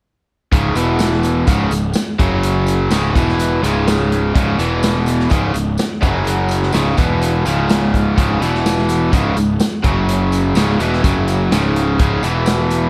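Two bright, compressed overdriven electric guitars lead this driving, sunny classic rock excerpt, picking a riff through Db5, E5 and Gb5 chords, one of them pushed up front. A fuzzy, overdriven picked electric bass sits just as close, with a punchy vintage drum kit on hi-hat, kick and a medium-tuned snare sounding natural and rolled-off in a studio room. A very quiet, jingly tambourine joins at 0.8 seconds, the whole band sits in light reverb and small room ambience, and everyone plays until roughly 12.9 seconds, in a straight 4/4 cut from a longer piece.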